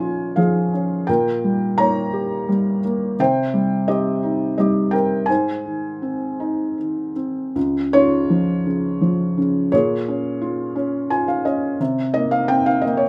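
A felt-muted upright piano carries this short passage alone, its muted, boxy tone sitting up front with the soft clatter of the action clearly audible beneath the notes. The music is lyrical solo classical piano in 3/4, played with a free rubato that gives it a peaceful, tender mood. The harmony moves through Bbm7, Bbm6, Cm7 and Ab before a new section opens at 7.6 seconds on Db, then returns to Bbm7 and Cm7. Between 10.8 and 11.8 seconds the piano adds a brief fill, and its range stretches from Db2 up to Bb5. A light reverb surrounds the intimate sound of the instrument, and the passage is cut from a longer piece.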